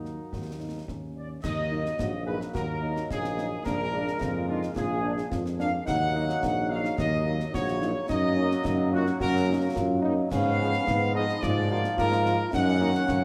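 A mellow tuba sits up front in this martial, resolute march for wind band, carrying the bass line with a light vibrato and a roomy, distant quality. Above it, a dark trumpet section with a soft attack takes the melody in a classical style, while a clear euphonium with vibrato adds a second line in the background. A very quiet French horn section fills in warm accompaniment. At 1.2 seconds a large, airy flute ensemble joins with a straight-toned second line, and at 1.4 seconds a tight trombone section adds sustained chords beneath. Concert snare drum, concert bass drum and bright clash cymbals keep the steady two-beat march pulse. The whole band rings in a recital hall's reverb, and the passage is cut from a longer piece, moving through minor harmony to a tense diminished chord before resolving toward the home chord.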